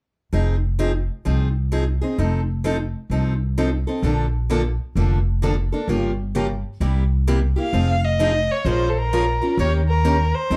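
A dark, warm production with light reverb frames this fiery, swinging snippet of acoustic string swing at 130 BPM, cut from a longer piece, where a bright, boxy picked steel-string parlour guitar with fresh strings and audible finger squeak picks out accompaniment beside a woody pizzicato upright bass through changes from Fm7 and F7 to Bbmaj7 and a Gm7b5 to C7 turn. At 7.6 seconds a single bowed violin enters with the melody, its rich, expressive tone carrying vibrato and portamento, set in plate reverb and tape echo. The second section then moves through Fm7, Bbm7 and Eb7 until the cut at 10.6 seconds.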